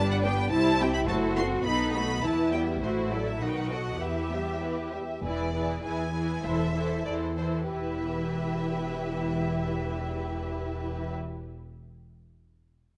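Closely miked and lightly reverberant, this restless, dramatic excerpt from a quick classical-period movement for string orchestra in E minor and 2/4 moves at 89-107 BPM with a rubato feel and slows from 4.6 to 7.7 seconds, as a focused violin section carries the melody over a soft-attacked second violin line, warm viola accompaniment, even cellos and clear double basses, all bowed with vibrato through chords such as F#m7b5, B7, Em and a closing turn to E7.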